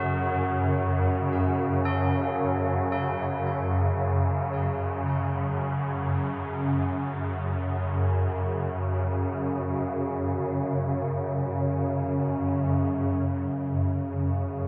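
A swarming, detuned drone sits up front in this unsettling, cavernous dark ambient excerpt in free time and F# minor, its wave-folded, granular tone holding low beneath faint, metallic tubular bell arpeggios that ring in the background with delay until 12.9 seconds, leaving the drone alone in a vast, echoing space until 14.7 seconds.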